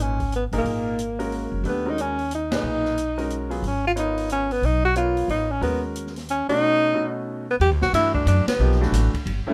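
Spiritual and searching, this short modal jazz waltz excerpt swings in 3/4 as a mellow tenor saxophone carries the melody up front with vibrato, subtone and scooped notes. A clear, intimate baby grand piano with audible action noise accompanies it, while a woody, thumpy pizzicato upright bass on gut strings and an acoustic drum kit with dark cymbals and a boomy kick fill out the light reverb of a natural studio room. The band hits accents at 2.5 and 8.4 seconds, and the harmony shifts from G#m9 through B7 to Em11 near the end.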